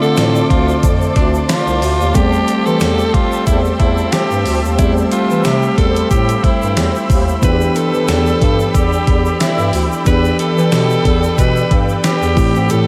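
A lightly swung sixteenth-note groove at 91 BPM in 4/4 drives this dramatic, nostalgic 1980s-style pop passage, cut from a longer piece, with a gated digital drum machine entering at 0.2 seconds with a thumpy kick, hi-hat, tambourine and an overdriven, gated-reverb snare, while a grainy egg shaker sits quietly in the background. A raspy, gritty alto saxophone carries the melody up front with pop-style vibrato, over a bell-like tine electric piano whose clean accompaniment is thickened by analog chorus. A warm bass clarinet supplies the bass line in a classical manner, and above everything floats an ethereal, warbling pad of detuned, slow-attack chords treated with ensemble chorus and its own reverb. The harmony moves from Dm7 to C6, then Em7, arriving on Am7 near the end. The whole mix is soaked in a huge, dreamy ambient reverb that lends the track a hazy, vintage glow.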